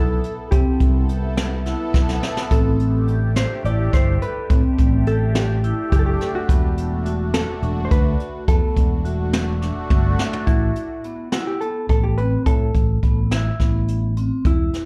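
Progressive instrumental band music in a tense, brooding 7/8, heard as a short cut from a longer live club performance with light club reverb. A dark, clean hollow-body jazz guitar carries the melody with slapback echo, over ringing, metallic vibraphone arpeggios, a swirling, detuned sawtooth pad with phaser and chorus that stops at 10.4 seconds, and a growly, punchy fretless bass up front. A brushed jazz kit with a high-tuned snare and boomy kick drives the piece, with fills at 1.9 and 9.9 seconds, as the harmony moves from Cmaj7 through Am7 and E9sus4 to settle on Asus2.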